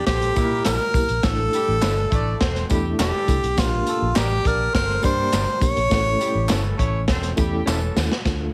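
Heavily compressed, radio-like sound in a small room frames this urgent, passionate 1960s-style soul clip at 103 BPM: a close-miked, softly attacked tenor saxophone carries the melody until 6.8 seconds over a dark, distant horn section doubled in octaves, a round, foam-muted fingered bass, a gritty breakbeat kit with a tight kick that closes on a drum fill at 7.7 seconds, a reedy, worn electric piano with fast tremolo, tambourine and handclaps, and a slightly broken-up electric guitar picking stabs in the background.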